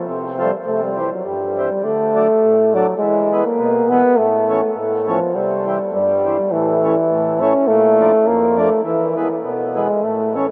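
Bouncy and festive, this fragment of alpine folk moves at 102 BPM in a lightly swung 2/4. An up-front euphonium carries a clear, vintage, classical-style melody from 0.0 seconds, while a reedy, mellow accordion with a boxy small-room tone plays full accompaniment through a restless chord path from F to E. Both sit in a vast, echoing space washed by huge ambient reverb.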